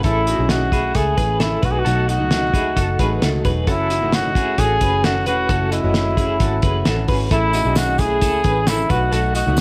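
A straight 4/4 pulse at 132 BPM drives this short, bittersweet and wistful cut of jangly indie pop, which moves between Amaj7 and B7. The cloth-damped drum kit sits up front with a muffled, gritty, lo-fi character, a fat snare and a tight kick. A vintage muted electric bass adds a dark, round, punchy low end beneath it. A fingerpicked plugged-in steel-string acoustic guitar fills out the accompaniment with a full-bodied jumbo sound, while a bright, twangy twelve-string electric guitar spins clean arpeggios through tremolo and plate reverb. Leading the melody is a warm trumpet, up front and vintage in tone with vibrato. A jingly tambourine joins in the background at 7.5 s, all inside a moderate studio room.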